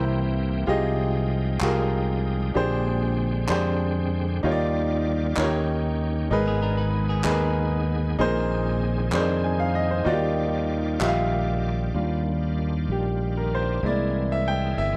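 A brilliant, up-front grand piano leads this slow, hopeful gospel excerpt in a straight 6/8, carrying the accompaniment from the first moment and stepping out for a solo at 12.0 seconds. Beneath it, a round, punchy electric bass sits close and dark, while a tonewheel organ holds full, shouting chords, lightly overdriven and turning through a slow rotary speaker with chorus vibrato. A group handclap enters at 1.6 seconds, sounding hollow and distant as if from a large room, and lends the passage a jubilant, congregational lift. At 6.5 seconds a clean, twangy electric guitar adds a brief second line in the background, its compressed, scooped tone bathed in spring reverb. The harmony moves through rich extended chords such as Fm9/C, Bb13 and Ebmaj9, and the whole excerpt has the dry, close sound of a 1970s studio session.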